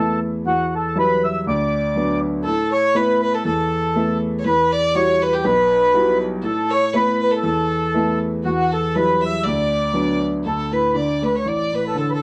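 A brisk two-beat pulse with lightly swung eighths drives this cheerful, lively Celtic folk polka, cut from a longer piece. An up-front, reedy accordion carries the tune from the start with a full, mellow tone and a boxy small-room character, while a clear baby grand piano supports it from low bass to the middle register with open, long-sustaining chords. At 2.4 seconds a single bowed fiddle joins as a second line in the same range as the accordion, focused and lightly vibrato-touched but set distant and softer in the mix. The harmony moves through colorful chords such as Emadd9, D6 and Asus2 before settling on a bare D5 as a new passage begins at 10.5 seconds. The whole recording sits in a wet studio reverb and carries the worn, warbling pitch drift of old cassette tape, lending the bright dance a nostalgic haze.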